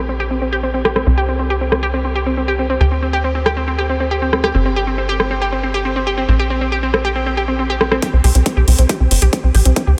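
Driving and euphoric, this uplifting trance fragment sets a round, warbling vintage analog pluck playing filter-swept chorused arpeggios up front over a tight, wave-folded sequencer bass, both pumping with sidechain through Bbsus2, C5, D7sus4 and Gsus4 changes, while a big-room dance kit's metallic hats and rim clicks sit in the background from 0.8 s, and a punchy layered electronic kick arrives at 8.0 s for the build-up, all inside a dreamy mix soaked in huge ambient reverb.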